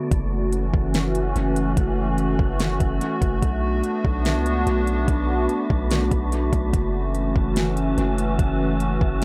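Atmospheric cloud-rap hip hop with a hazy, spacious half-time feel, cut from a longer piece. A hollow, flute-like pad holds sustained chords with chorus and sidechain pumping, while a breathy, wind-like tuned noise texture with built-in reverb sits quietly behind it from the very start. At 0.1 seconds a deep, sine-toned 808-style bass with long decaying notes enters alongside a smooth R&B drum kit of soft kick, fat snare and crisp hats run through analog delay, in a dry, echo-heavy mix.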